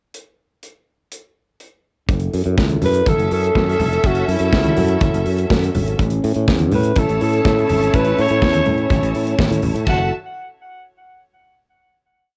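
A home cassette recording in a snug booth carries this glamorous, driving disco piece, where a polished drum kit with tape character sets a four-on-the-floor beat with open hats on the off-beats before a growly fingered electric bass, dark French horn pads, thin-skinned congas, a breathy, raspy alto saxophone with tape echo singing hook phrases, and a lush string section swelling long notes under plate reverb join in by 3.1 seconds, moving from F#m7 to A and back for a final chord.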